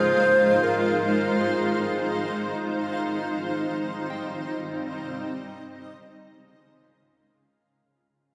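A breathy alto flute with vibrato, a blurred, evolving granular pad and a very quiet, pure FM bell tracing arpeggios begin together in this melancholic, reflective ambient passage in free time and F minor, the flute floating over the other two, all set in a lush hall reverb with shimmer and delay on the flute. The chords move from Fm7 to Cm to Bbm7/Db as a fade-out begins at 1.4 seconds. The flute drops away at 2.6 seconds and the bell at 5.6 seconds, leaving the full-bodied, detuned pad up front until the fragment ends.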